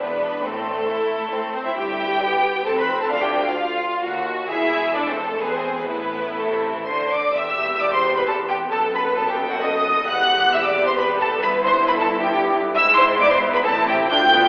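A clear, focused violin section carries the melody up front in this quick, urgent classical-period movement for string orchestra, played in triple time with a restless, rubato feel. Alongside it, a lush second violin section bowed with vibrato shapes a supporting line, and the violas fill in a rich, even accompaniment. Underneath, the cellos carry the bass, while a bright double bass section sits in the background. The whole ensemble plays throughout this portion cut from a longer piece, with a second section taking over at 7.3 s. The sound is heard from further back in a wet recital hall with a narrow, telephone-like tone, which adds a distant cast to the urgent string writing.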